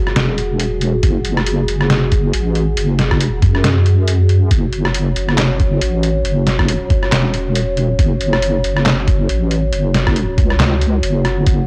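A dark, detuned analog pad opens this brooding deep dubstep excerpt, its slow-attack sawtooth chords coloured by chorus, phaser and cassette tape, while a warm square-and-sine wobble bass with chorus sits up front beneath it. Pitched-down, muffled sampler-style trip hop drums (handclaps, hi-hat, rim click and a medium-tuned snare) move with a swung half-time feel and are joined at 1.0 s by a compressed, thumpy electronic kick, both re-recorded in a small room. The piece sits in light reverb as a home recording on cassette.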